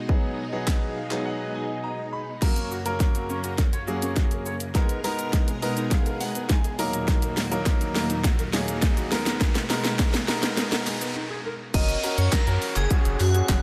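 Upbeat and summery, this dance-pop excerpt moves at 103 BPM in a straight 4/4 in F# major, cut from a longer piece. A very quiet, twangy twelve-string electric guitar opens with a brief melody, while a shimmering vintage string machine holds sustained chords with ensemble chorus and sidechain pumping. A clear concert grand piano with long sustain supplies accompaniment and fills, and a punchy, layered pop drum kit sits up front with a fat snare, handclaps, hi-hat, shaker and crash cymbal. From 2.4 seconds, a felt-muted upright piano adds soft, intimate arpeggios with audible action noise during a build-up marked by a drum fill, background risers and downlifters, and a crisp group handclap that joins at 7.7 seconds. At the drop at 11.7 seconds, a round, deep analog bass and an airy, dreamy lead with vibrato and delay arrive over the F# chord, both pumping to the sidechain beneath light reverb.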